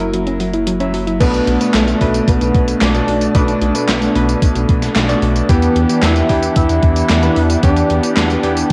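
A straight 4/4 groove drives this nostalgic, nocturnal synthwave excerpt, with a gated 80s digital drum machine laying down handclaps, hi-hat, snare drum, tambourine and crash cymbal, its snare bathed in gated reverb and roughened by overdrive and cassette tape. At 1.2 seconds a thumpy, overdriven electronic kick drum joins as the loudest part, dropping out at 7.7 seconds. Beneath it, a dark, glossy chorused synth bass with tube saturation holds the low end. A brassy, detuned analog pad sustains chords in the background, chorused and pumping with sidechain, while an electric grand piano with a clangy bass adds vintage stabs. A round, mellow pluck plays arpeggios through tape echo only in the opening moments, and then an expressive synth lead carries the smooth, vibrato-tinged melody until 8.1 seconds, shadowed by a lush, dreamy FM electric piano second line with its pad layer. The harmony moves from F#7 to Bm7 and then Em7, all within a moderate spring reverb and the lo-fi character of a home cassette recording.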